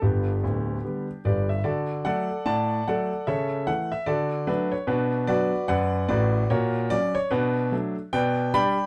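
Close, detailed microphones and light reverb put a concert grand piano up front, intimate and a little boxy, with audible action noise, deep bass and long sustain. The piece is a playful, swinging stride jazz number in D major at 148 BPM in 4/4, with the eighth notes swung at 61% and the instrument tuned to A4 = 441 Hz. The piano plays solo throughout this 8.9-second cut from a longer piece, ranging from D1 up to B5. A brief opening section on G gives way at 1.6 seconds to a longer passage that moves through D, A/C#, D and Bm. It then continues through F#/A# and Bm7 before settling on G/B at 8.1 seconds.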